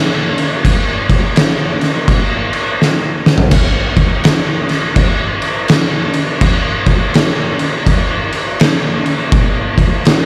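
Sludgy and heavy, this short metal excerpt is built entirely on an oversized, low-tuned acoustic drum kit in 4/4 with a swung eighth-note feel. The kit enters at 0.4 seconds and plays through to the end at 10.3 seconds, using crash cymbal, kick drum, snare drum and toms. A drum fill breaks in between 2.8 and 3.5 seconds. The sound is lo-fi, muffled and gritty, with a boomy kick, a fat snare, dark cymbals, a rolled-off top and a saturated edge, all sitting up front. The kit carries the character of a bright stone room, though the overall recording has little reverb.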